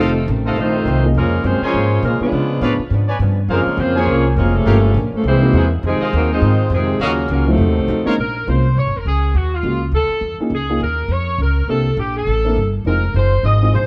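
Dramatic and brassy, this fast swinging big-band jazz excerpt at 205 BPM sets a tight, clear saxophone section's lead melody over a bright trombone second line, soft-attack trumpet stabs, a woody upright piano, a very quiet clean hollow-body archtop guitar and an up-front plucked upright bass, until the trumpets, trombones and guitar drop out at 8.1 seconds as the harmony settles into Bb minor, with the guitar returning at 12.9 seconds, all within a dark, warm production with light reverb.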